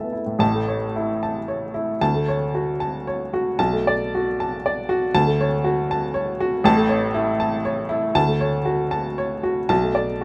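Hopeful and tender, this neoclassical minimalist piano piece unfolds in 3/4 at 116 BPM with rubato and uneven beats, cycling gently through A, Dmaj7 and Bm7 harmonies. A solo upright piano, heard from 0.0 to 10.2 seconds across a range from A1 to A5, sits up front with a woody, natural, intimate tone, short sustain and audible action noise. Moderate studio reverb gives the room a sense of space around this short cut from a longer piece.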